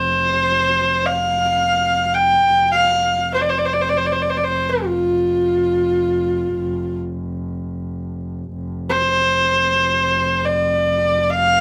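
A husky, up-front horsehead fiddle carries the melody between F4 and G5 in this Mongolian folk piece in free time, its bowed horsehair strings sounding clear and earthy with light vibrato, portamento and a plate reverb. Beneath it, a single bowed double bass holds a smooth, even drone on F1 throughout the 11.6 seconds, rich and distant with its own vibrato and set much lower in the mix. The mood is vast and galloping, tuned to A4 = 444 Hz, heard in a moderate studio room in this fragment cut from a longer piece.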